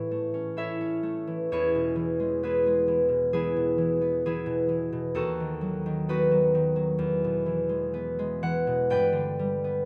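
The recording has a close, detailed sound with light reverb, placing a lone concert harp up front in a clear, intimate space. This dreamy, graceful classical excerpt for solo harp moves at 65 BPM in 4/4 with a rubato feel, tuned to A4 = 442 Hz. The fingerpicked harp sounds warm and ringing, spanning from D#2 up to G5 and playing across the full 9.9 seconds. Its harmony passes from A to E, then to B7/D# at 5.2 seconds, back to E, and arrives on G at 8.9 seconds. Cut from a longer piece, the passage feels like a fleeting glimpse of an unfolding reverie.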